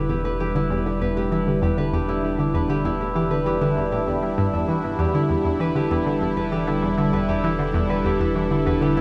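A steady, straight four-four pulse carries this expansive, mysterious fragment of sequencer-driven ambient space music, where a round, detuned analog pluck riff with chorus and delay circles in the low register, a fingerpicked concert harp rings out arpeggios with delay up front, a bright, swirling pad with ring modulation, phaser and chorus holds sustained chords, and a deep sine sub bass sits on one low note, the whole set inside a vast, echoing cathedral reverb.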